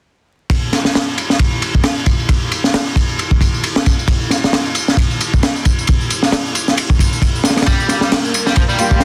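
A dense, heavily limited modern master with a light reverb and a layer of vinyl crackle gives this raw, energetic breakbeat clip its gritty character. From 0.5 seconds a crunchy breakbeat kit sits up front at 134 BPM in 4/4 with a 56% swing on the sixteenths, its punchy kick, high-tuned snare and dark ride cymbal sounding saturated and small-roomed with a rolled-off top. An overdriven, analog-sounding tambourine sits in the background under a low-pass filter. At 7.7 seconds a bright, double-tracked distorted electric guitar enters with a picked riff between F3 and G3, treated with overdrive and dub echo, while a swirling sawtooth pad with phaser, chorus and sidechain pumping holds sustained chords in the background over Gm7 in G minor. At 8.8 seconds a dark chamber string section adds soft-attacked, bowed sul tasto stabs with light vibrato, intimate and close, just before this fragment of a longer piece cuts off.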